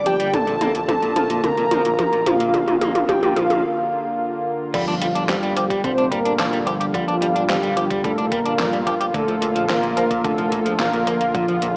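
A cinematic, nocturnal synthwave excerpt moves at a steady, straight pulse, carried by a soft, octave-layered synth lead with chorus, tremolo and digital delay, joined higher by an airy, dreamy second line. Beneath them a mellow analog pad holds sustained chords that pump with sidechain, while a dark, detuned saw bass rumbles in the background and a very quiet, nasal analog pluck traces arpeggios. An electric guitar at the edge of break-up plays a riff through lush chorus, a low-pass filter and digital delay. A layered pop kit with a fat snare, metallic hats, handclaps, toms and crash, all in gated reverb, is joined by a thumpy, sampler-style electronic kick. A drum fill and a filter sweep on the pad open the piece, a break arrives at 3.6 seconds, and a faint electronic impact marks the second section at 4.7 seconds as the harmony moves from Bbmaj7 to Gm7 and back. The whole mix sits in a lush hall reverb with a small-speaker character.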